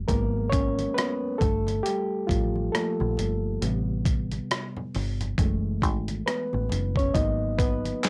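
R&B and neo-soul fragment at a slow 68 BPM in 4/4 with a swung sixteenth-note feel, smooth and soulful, where a reedy, clean electric piano heard through its built-in speakers carries a solo for the full 8.1 seconds over minor-ninth chords (G#m9, Gm9, Am9, F#m9). Underneath, a dark, round, foam-muted fingered bass with transformer saturation sits up front beside a gritty, compressed sampler-style drum kit of thumpy kick, medium-tuned snare, rim click, hi-hat and handclaps, re-recorded in a small room and tinted by cassette tape. Very quiet low-tuned congas, played with soft hands and ringing close and dry, enter at 0.8 seconds, and the whole home cassette recording carries a light reverb.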